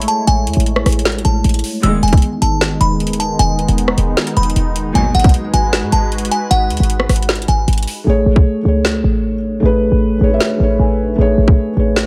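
Hard-clipped kicks, a woody snare and metallic hats drive this triumphant, dreamy half-time hip hop and trap excerpt alongside a punchy, tight sine 808 bass, while a tinkling FM tine bell melody with chorus and delay floats over a detuned sawtooth pad with chorus, lush bowed strings with vibrato add brief stabs, and at 8.0 seconds the bell and pad give way to a boxy, thick-felted upright piano with audible action noise as the hi-hats drop out, the piano adding a short fill around 10.6 seconds.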